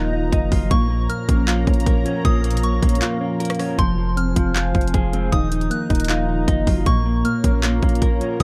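A brooding, dark trap excerpt in a half-time feel opens on round, chorused electric-piano-like keys with phaser, a detuned sawtooth pad with slow attack, a clean fingered guitar playing filtered arpeggios with delay, and a soft, warbling FM bell line, all sitting over a deep, sine-like 808 bass with long decaying notes. At 0.3 seconds an overdriven trap kit with a hard-clipped kick, bright hi-hats, handclaps and rim clicks arrives up front, and there is a brief break from 3.0 to 3.8 seconds. The production is dry, and the chords move among Ebmadd9, Bbm and Fm.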